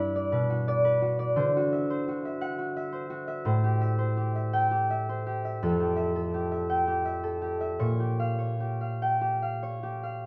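A concert harp, thumb-plucked, warm and ringing, sits up front from the first moment in this dreamy, serene classical solo, cut from a longer piece and tuned to A4 = 435 Hz. It moves in a rubato 6/8 at roughly 45-59 BPM in dotted quarters, ranging from F2 to G5 through a drifting progression from Bm and D9 to Am7, Fmaj9 and finally Bbm6 at 7.8 seconds. A moderate studio reverb gives the notes a soft halo through to 10.3 seconds.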